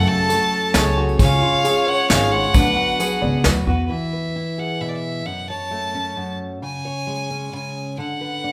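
In a straight-feel waltz time, this yearning, bittersweet indie folk piece opens with an intense, clear bowed fiddle melody up front over a reedy second fiddle, a picked dreadnought guitar with finger squeak and a twangy, plunky open-back banjo in the background. Soft brush drums with a punchy kick and a very quiet jingly tambourine join at 0.3 s, followed by a woody, thumpy pizzicato upright bass at 0.7 s, until by 3.9 s the other parts fall away to leave the fiddle singing over a full-bodied fingerpicked acoustic guitar in the moderate reverb of a large studio room.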